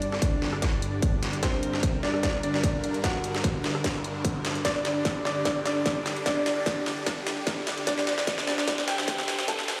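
Menacing and chaotic, this heavy wobble dubstep excerpt at 149 BPM in a half-time 4/4 feel is one long build-up, with a brilliant concert grand piano melody through digital delay over huge, detuned supersaw chords with sidechain pumping, an overdriven dubstep kit of hi-hat, rim click and deep snare up front, a distorted electronic kick from 0.2 seconds, and a background riser from 0.8 seconds, all heard through a drum fill and filter sweep in a plate-reverbed, stony-sounding bare room.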